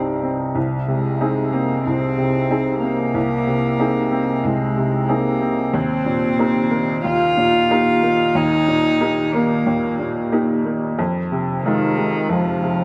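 The rhythm flows freely in a rubato 4/4 at around 92 BPM, giving this neoclassical piano-and-strings excerpt a fragile, reflective mood. A bright upright piano carries the accompaniment from C2 up to Ab4, its woody, worn tone slightly detuned and ringing with long sustain close to the listener. Alongside it, a single bowed cello sings a second line between Eb3 and F4, played sul tasto with a soft attack and a pure, floating quality, touched by a slapback echo. The harmony moves from Cm to Ab/C at 0.6 seconds, opens onto Ebadd9 at 5.7 seconds, and settles on Fm7 at 11.0 seconds. Both parts, tuned to A4 = 444 Hz, sit in a moderate scoring-stage reverb, and the passage runs 12.8 seconds as a fragment of a longer piece.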